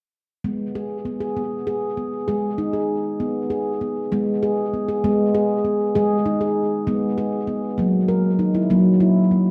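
A dark, reverberant recital-hall sound surrounds this brief cut from a longer piece, with a touch of small-room closeness beneath the hall's 1.7-second tail. It is meditative world music for tuned percussion: a solo handpan plays alone from 0.4 s to 9.5 s in 6/8 at 65 BPM, with a straight, hypnotic feel in G# minor. The handpan sits up front with a ringing, mellow stainless-steel tone, struck with soft fingertips, and a diffuse ambient delay blurs its notes into the room. An opening phrase gives way to a new passage at 4.1 s, and the harmony holds on G# minor before moving to F# at 7.8 s. The overall mood is calm and inward, suited to quiet reflection.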